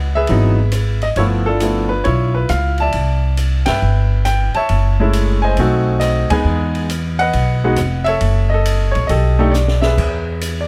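The clear baby grand piano carries the melody up front, its intimate sound catching a trace of audible action noise as it moves between E3 and A5 in this short jazz piano trio excerpt. Set in E major at a swinging 136 BPM in 4/4, the mood is relaxed and playful, with chords moving from C#m11 through G13, Cmaj9 and F#m9 before resolving via B7alt to E at 10.0 seconds. The upright bass sits just as close, plucked with a woody, bright tone from its steel strings. The open jazz drum kit enters at 0.3 seconds, sitting further back with dark cymbals, a high-tuned snare and a boomy kick, using crash, ride, hi-hat and rim click. The band hits accents together at 3.6 and 6.2 seconds, and a drum fill near the close leads into the final chord. The sound is dry, with little reverb, giving the trio a natural, in-the-room presence.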